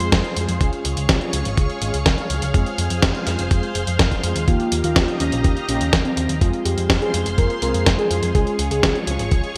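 Nostalgic and bittersweet, this italo disco excerpt moves at 124 BPM in F minor, with a lush string machine holding sustained chords under mellow, brassy synth stabs treated with chorus and phaser. A round, dark hollow-body electric bass and a gritty, thumpy electronic kick drive the groove alongside an up-front sampler-style kit of hi-hat and snare bathed in gated reverb. At 4.5 s a soft octave-layered synth lead enters with vibrato, chorus and delay, all set in a plate reverb and bright 1980s-style digital production.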